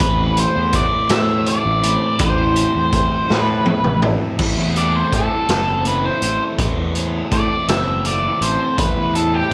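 A lightly reverberant, gritty sound frames this trippy, hypnotic psychedelic rock cut in A dorian at a slow 55 BPM in 6/8, where a dark octave-fuzz lead guitar with slapback echo carries the melody up front, a bright, double-tracked crunchy guitar plays a phased riff, a round fuzz bass growls underneath, and a saturated garage drum kit with a boomy kick and a rolled-off top rolls through a fill at 3.3 seconds before the lead guitar takes a solo from 4.4 seconds.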